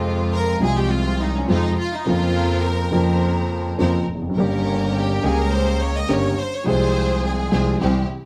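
A moderate studio reverb gives this short tango excerpt in F minor a sense of space, its 104 BPM pulse in 4/4 pushed and pulled by a rubato, playful yet passionate feel, with tuning pitched at A4 = 438 Hz. A dark, woody, slightly detuned upright piano sits up front with vintage accompaniment, while a single bowed double bass adds an earthy, biting low line with light vibrato, and a rich string section punctuates with smooth, even stabs. From 0.3 seconds a lush, close violin section carries the second line over a harmony that moves from Fm through Bbmadd9/F and Gdim to Fm/C.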